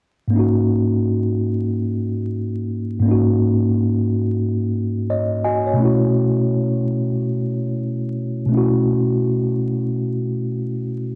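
Dark, hazy production with vinyl crackle and a moderate plate reverb frames this short hip hop excerpt, which drifts in free time with a nostalgic mood. A mellow, clean tine electric piano sits up front through built-in speakers, colored by cassette tape and a low-pass filter, spanning G#2 to G#5 as it plays a G#9sus4 chord before a brief fill at 4.8 seconds. It then settles onto B9sus4 at 5.8 seconds and plays until 11.2 seconds.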